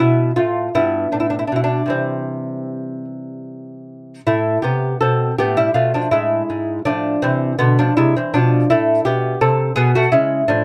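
A classical, baroque-style dance for solo lute, this short piece cut from a longer work moves in a slow 6/8 at 53 BPM, its beats uneven and shaped by rubato. The mood is solemn yet flowing, opening in C major before turning to A minor at 4.3 s. The lute is the only voice throughout, fingerpicked and up front, with a bright, delicate tone from its nylon double strings, some of them octave-doubled. It ranges from G2 to A4, moving through chords such as G and C before the minor passage leans on Am, E7/G# and a closing Amaj13 near 9.8 s. Light reverb surrounds it, and the overall production is dark and warm, giving the strings an intimate setting.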